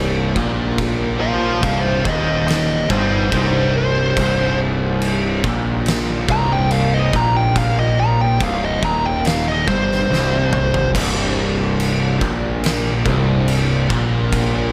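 A sludgy, hypnotic stoner and doom metal excerpt in C minor at a slow 71 BPM opens on a low riff shared by a raw, double-tracked garage guitar with overdrive and two dark, thick fuzz guitars, over a growly fuzz bass and a faint, reedy tonewheel organ holding sustained chords through its slow rotary speaker. An oversized low-tuned drum kit with a punchy kick, fat snare and dark cymbals enters at 0.4 seconds in a pumping stone room, and from 1.2 seconds an up-front fuzz lead guitar with wah, distortion and analog delay solos high above the riff. A drum fill at 10.1 seconds carries the music out of the solo into a closing section built on a C power chord, all set in a small room with light reverb.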